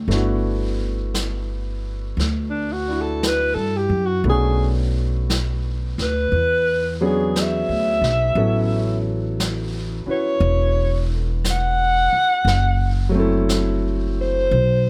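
A slow 58 BPM swung 4/4 groove carries this smoky, melancholic jazz ballad fragment, where a breathy, scooped alto saxophone with mellow vibrato takes the melody from 2.5 seconds over clear concert grand piano accompaniment, a woody pizzicato upright bass and a vintage brushed drum kit with a rolled-off top, all captured close and dry as the harmony moves from Gmaj13 through Bm7, E13 and A6 to F#m7b5.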